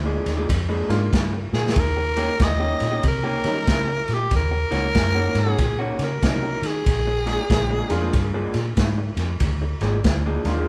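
Electric blues shuffle with a swaggering, laid-back swing, cut from a longer piece and played by a band live in one room with moderate stone room reverb. A dark, round, foam-muted electric bass and a gritty, saturated breakbeat drum kit with a tight kick, dark cymbals and a rolled-off top set the groove, the drums sitting up front in the mix. An electric guitar through a small old amp plays a picked, slightly broken-up, lo-fi riff, while a bright upright piano adds woody, intimate accompaniment with short sustain and audible action noise. Alongside a drum fill at 1.5 s, a raspy, growling tenor saxophone takes the jazz-style solo melody up front with vibrato, dropping out at 8.6 s. The harmony moves from Bb7 to Eb7, darkens to Ebm7, and returns to Bb7.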